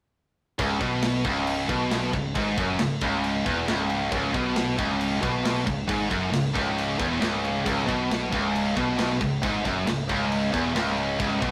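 Heavy metal in C# minor at 136 BPM in a straight 4/4, this short cut from a longer piece carries an epic, dark mood over a single C# minor chord. Two bright, distorted guitars, one heavy and high-gain and the other tight, sit up front playing low riffs from 0.6 s, joined by a growling picked electric bass with overdrive and an acoustic metal drum kit built on tight kick, medium-tuned snare and crash cymbal. The drums are mid-forward in a studio room, with a rolled-off top end. At 7.6 s a very quiet, double-tracked overdriven guitar adds a third riff layer beneath the others. The whole has a rough rehearsal-room character with light reverb and a saturated glow.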